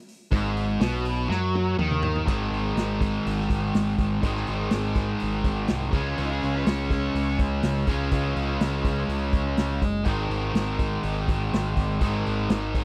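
A straight 4/4 groove at 123 BPM drives this sunny classic rock excerpt in Ab mixolydian, with a vintage drum kit of punchy kick, medium-tuned snare and dark cymbals laying down the beat and a fill from 1.3 to 2.3 seconds leading out of the opening power chord on Ab5. Two bright, up-front electric guitars, one distorted and scooped, the other overdriven, play the riff over a growling, round overdriven bass as the chords move from Ab to Db and back. A shadowy overdriven guitar line sits in the background between 6.2 and 7.4 seconds, all captured in a dry, close 1970s-style studio sound.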